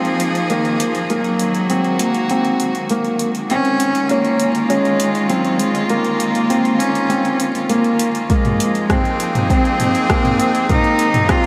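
Moving and hypnotic, this piano and strings electronica excerpt builds as an up-front cello with a nasal, intense tone carries the melody over sustained chords from a close chamber string quartet that pumps with sidechain, a felt-muted upright piano riff with audible action noise and tape echo, a very quiet rumbling detuned saw bass, and deep house hi-hat, rim clicks and toms, before a deep electronic kick joins at 8.3 s, all soaked in a huge, dreamy reverb.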